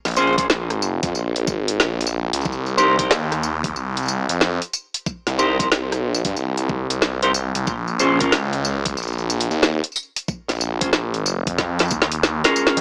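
Glitch hop at 92 BPM in Bb dorian, gritty and funky with a swung 16th feel, where a thick, swirling phased saw bass and an overdriven drum kit of woody snare, bright hats, rim click and tambourine run throughout alongside a knocking electronic kick, while twangy clean electric guitar stabs with chorus, tape echo and sidechain pumping sit up front over Bbm7 and Cm chords, all through light reverb and a small speaker sound, closing on a drum fill from 11.6 seconds.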